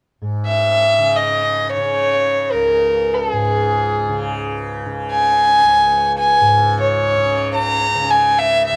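Indian classical music in free time, this short excerpt from a longer piece sets out raga Shivaranjani on C# with a meditative, longing mood. A softly plucked tanpura enters at 0.2 seconds, its bright, buzzing drone shimmering low in the mix beneath everything that follows. At 0.5 seconds a single bowed violin takes the melody, sitting up front with a reedy, gut-string tone in a period style. The violin ranges from G#4 up toward A#5, bathed in plate reverb that gives its line a glowing halo. The studio room adds a moderate reverb, and the overall production is dark and warm, holding both parts together until 8.8 seconds.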